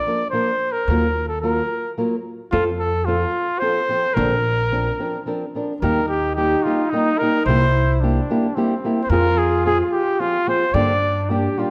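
Romantic and proud, this mariachi excerpt in a straight triple metre opens with a trumpet carrying the melody up front, its tone smooth on top with light vibrato in a classical manner, over small, dark, thumb-plucked nylon-string guitar with audible finger squeak and woody pizzicato upright bass. At 5.8 seconds the music moves into a new section and a second trumpet enters with a breathy, whispered second line, dark and intimate with scooped notes, soft attacks and a pop-style vibrato. A recital hall's reverb wraps the ensemble, and the passage is cut from a longer piece.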